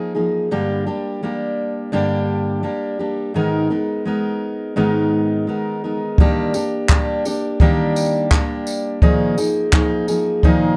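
A fingerpicked steel-string acoustic guitar opens this short acoustic pop piece, cut from a longer song, playing alone from 0.0 seconds with a warm, full-bodied jumbo tone and fresh strings. The mood is carefree and heartfelt, set at 85 BPM in 4/4 with a gentle 16th-note swing, in Eb major and tuned slightly high to A4 = 443 Hz. The guitar accompaniment ranges from G2 to Bb4, sitting up front as it moves from Gm to Abmadd9 and then into Ebmaj7 and Bb7sus4. At 6.2 seconds a compact cocktail drum kit enters, its handclaps, kick drum and tambourine heard in a small room with a dark, smooth character and a punchy kick, also placed up front. The drums stop at 10.6 seconds, just before the guitar closes the piece. Light reverb adds a touch of space to the intimate sound.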